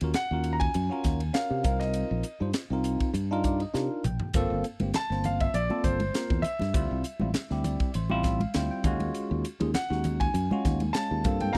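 Electric jazz fusion with a slick, funky swing, cut from a longer piece, where a barky, bell-like tine electric piano with phaser comps up front over a round, dark fretless bass with subtle chorus and a crisp, punchy drum kit, while a grand piano with audible action noise carries the melody from 0.2 seconds, congas join softly in the background at 4.8 seconds, electric piano fills and a drum fill break up the minor eleventh chords, and the whole sits in a dry, close 1970s-style studio sound.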